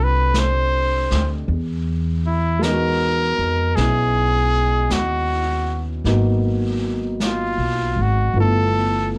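Jazz ballad excerpt, melancholic and wistful with a swung feel, where a brilliant, punchy trumpet carries the melody up front with light vibrato and scooped notes. A concert grand piano with deep bass and long sustain provides accompaniment alongside a woody, growly pizzicato upright bass, while a vintage brush drum kit with a rolled-off top enters at 0.3 seconds on brushed snare, snare drum and hi-hat. The dark, warm production adds light reverb as the harmony moves through F9, Emaj9, Abm7 and G13.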